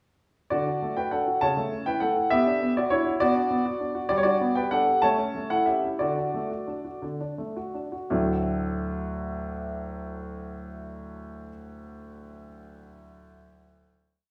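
A playful, graceful classical-period piano sonatina in 6/8, a single warm grand piano sits up front with a polished, present tone and long sustain, carrying a tune in sixths over a broken-chord bass from 0.5 seconds, slowing down between 3.2 and 8.1 seconds before settling onto a final chord at 8.1 seconds, all bathed in the wet reverb of a recital hall.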